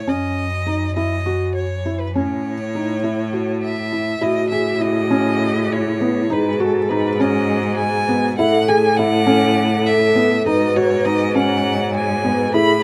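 Restless and shimmering, this contemporary chamber piece in A lydian moves in a straight 7/8 at 202 BPM (eighths), with a bowed violin carrying the up-front melody with vibrato over a rich, focused cello bass line and the hushed arpeggios of a felt-muted upright piano whose action noise is audible, until at 4.2 seconds a vibraphone struck with soft mallets adds a dark, ringing second line with fast motor vibrato and a very quiet French horn section settles in with mellow sustained chords, all captured dry and intimate by close, detailed microphones.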